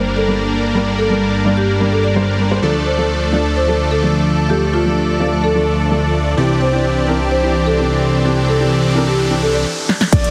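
Huge, bright, detuned supersaw chords with sidechain pumping and a low-pass filter drive this emotional, powerful festival progressive house excerpt at 128 BPM. Alongside them sit a fat, saturated analog bass, a woody marimba melody with tape echo, a soft felt-muted upright piano, and reedy gut-string chamber strings in the background over Gm, Dm and Cadd9. A background riser enters at 8.1 seconds and leads into a big-room kit fill with a punchy snare and metallic hats at 9.9 seconds, then an impact at 10.1 seconds, where a punchy electronic kick and a deep-bassed concert grand piano arpeggio arrive, with lush hall reverb and heavy radio-style compression on the mix.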